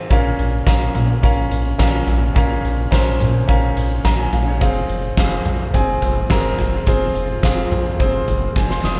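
Piano-driven pop in Bb minor at 106 BPM, bittersweet and earnest, this excerpt moves from Bbm to Fm over a straight 4/4 feel, with a clear, up-front concert grand carrying the accompaniment and a round analog bass holding down the low end. A huge arena drum kit with a fat snare and punchy kick sits up front, while from 1.3 seconds a very quiet, shimmering ambient pad adds ethereal sustained chords with chorus and phaser. The band sounds as if playing live in one room under light reverb, and a drum fill arrives at 8.6 seconds.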